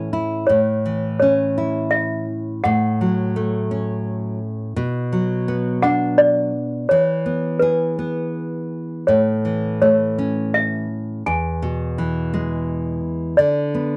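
Children's lullaby in A major, sleepy and tender, set in 3/4 at about 84 BPM with a loose rubato feel and tuned to A4 = 438 Hz. A clanky, bell-like toy piano, slightly out of tune, carries the melody over an up-front, fingerpicked nylon-string guitar whose deep classical accompaniment moves through A, F#m/A, Bm and E. The dry, close 1970s-style studio sound has light reverb, and this 14-second section is cut from a longer piece.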